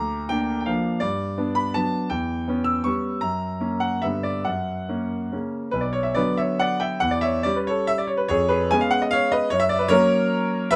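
Dotted rhythms shape this capricious, nostalgic romantic classical dance in 3/4, a rubato excerpt moving between 130 and 182 BPM, where a solo concert grand piano, clear and up front with a deep bass, open tone and long sustain in light reverb, spans B1 to E6, passing through chords such as Gmaj7 and F# before turning at 5.7 seconds to a new passage built on Bm, C#dim/E and C#7/E#.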